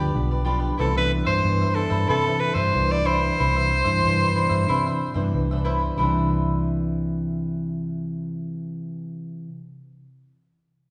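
A breathy, whispered soprano saxophone sings an intimate, jazz-style melody with light vibrato and scooped notes until 5.3 s in this yearning, bittersweet samba excerpt at 92 BPM in C major, moving from G7 to Cmaj9 over a crisp picked cavaquinho, an up-front fingerpicked classical nylon-string guitar with audible finger squeak, and a dark, round, foam-muted vintage electric bass, all set in the reverberant bloom of a recital hall.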